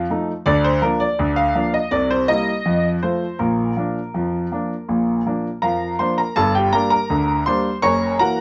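A straight 2/4 pulse at 82 BPM drives this lively, playful ragtime fragment in Bb major, cut from a longer piece, where a solo grand piano with a worn, open tone and long sustain sits up front in a moderate club reverb, ranging from Gb1 to Db6 as it moves through C7 and F7 before shifting to a new passage on Gm at 6.4 seconds and landing on Gb7 near the close.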